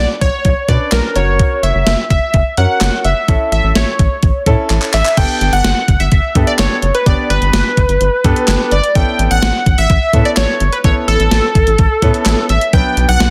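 A punchy, funky polysynth with chorus and delay carries the melody in this cool, melancholic synth-pop excerpt at 127 BPM, shifting from B minor toward a Gadd9 chord at 5.2 seconds. A rubbery, hollow square bass with a resonant filter pluck sits up front beside a gated 80s drum machine that enters at 0.2 seconds with a thumpy kick, gated-reverb snare, handclaps, hi-hat and crash, and plays a fill just before the change. A clear concert grand piano adds quieter accompaniment under a light digital ambience, all in a dense, heavily limited modern master.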